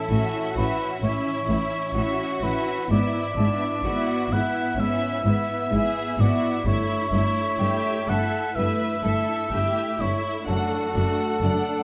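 A dark, smooth-topped cor anglais sits up front as a solo second line, singing with light vibrato through this serene, lyrical slow movement for symphony orchestra, cut from a longer piece. Above it, a distant, warm violin section carries the melody, while a second violin section adds a lush bowed line beneath. The viola section supplies soft-attack accompaniment with expressive portamento, and the cellos and double basses, entering at 0.1 s, form a rich, focused bass, the cellos also sliding gently between notes. A ringing, fingerpicked concert harp spins arpeggios in the background across a broad span. The rubato feel and a moderate recital-hall reverb, caught by close, detailed microphones, give the harmony moving from A through E7/G# and A7/G to D/F# an unhurried, romantic glow.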